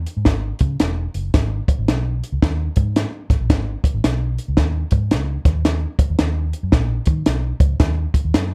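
A dark, lightly reverberant production frames this driving, passionate excerpt of uptempo 1960s-style soul in G# minor at 111 BPM with a swung 4/4 feel, where a round, foam-muted vintage fingered electric bass ranging from E1 to D#3 sits up front beside a compact cocktail drum kit of hi-hat, punchy kick and high-tuned snare with a smooth, rolled-off top, both parts playing from the opening seconds to the end at 8.5 s.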